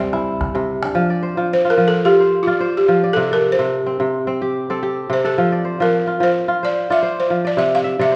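A woody, buzzing balafon played with soft rubber mallets sits up front with the melody and takes a solo from 1.0 seconds, over crisp, ringing fingerpicked kora arpeggios and a deep, band-limited calabash heard only until 0.9 seconds, in this warm, hypnotic excerpt of West African traditional string and xylophone music in F major at 108 BPM with a gentle sixteenth-note swing, set in a moderate recital-hall reverb and capped by a kora fill at 7.9 seconds.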